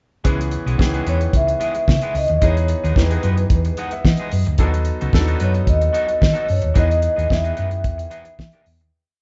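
A four-on-the-floor beat with sixteenth-note hats drives this joyful, danceable disco piece at 110 BPM in E major, played by a band live in one room with light reverb and a rolled-off top end. The damped 70s drum kit sits up front with a fat snare and tight kick, beside a round, punchy hollow-body bass playing a syncopated line with chromatic approach notes, while a slightly broken-up, twangy electric guitar chops sixteenth-note figures and a clear, intimate grand piano pushes drop2 chords with grace notes and a short fill at 3.5 seconds. From 1.1 seconds a mellow, ringing vibraphone with soft mallets and fast motor vibrato sings hook phrases over C#m7, Emaj7 and B7 before the whole band fades out from 6.8 seconds.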